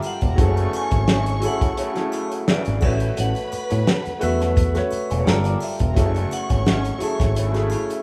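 A ringing, hard-mallet vibraphone carries the melody in this bittersweet, cinematic slice of lush 1970s-style soul at 86 BPM in F# minor with a light 16th-note swing, over a fat-snared drum kit and punchy fingered electric bass up front, an intimate grand piano with audible action noise, a dark, slightly broken-up electric guitar riff with wah and spring reverb, a shimmering triangle and distant violins in the background, and bright trombone stabs from 0.4 s, moving through F#m9, A69 and Gm9 in a rough home-demo mix.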